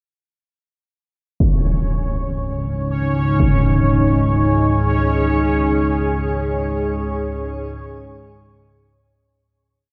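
An up-front analog drone anchors this desolate, dark ambient piece, entering at 2.0 seconds with an evolving sawtooth and pulse-wave tone, its chorused low notes held with a slow attack and long release. It is preceded at 1.4 seconds by a huge, bright impact, a distant slow hit softened by a low-pass filter, which opens the music in free time over a C#sus2 chord. A bubbling, resonant texture arrives at the same moment, its detuned sawtooth stepping through random filter changes around a held high note, washed in chorus and shimmer reverb. Soon after, a deep, moody pad joins with detuned unison sawtooth, sine and triangle layers and a sub octave, its slowly shifting chords also carrying shimmer. The whole recording sits in a huge, wet reverb with a dark, warm production, and a fade-out begins at 5.4 seconds.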